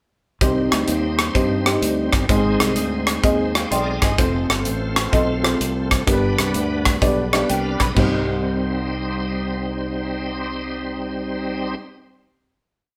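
A band playing live together in a stone room, with moderate reverb lending the whole piece a fervent yet solemn air, opens this uptempo gospel performance with a swinging 4/4 feel. The crisp fusion drum kit sits up front with bright cymbals and a punchy kick, driving a two-beat praise groove across china cymbal, hi-hat, rim click and toms before it drops out at 8.1 seconds. Beneath it, the fingered electric bass sounds growly and direct, walking and running with slides, while the woody, slightly detuned upright piano pushes close-voiced chords, its action noise audible. The tonewheel organ shouts out held drop-2 chords through a slow rotary speaker and chorus vibrato, its key click adding bite. Organ and piano both slip in short fills with grace notes, the organ from about 3.2 seconds and the piano from about 3.5 seconds until 4.2, then both again from 7.0 to 8.0 seconds, as the breakdown moves through Cm, Ab, F and G before the band settles onto a final C minor chord.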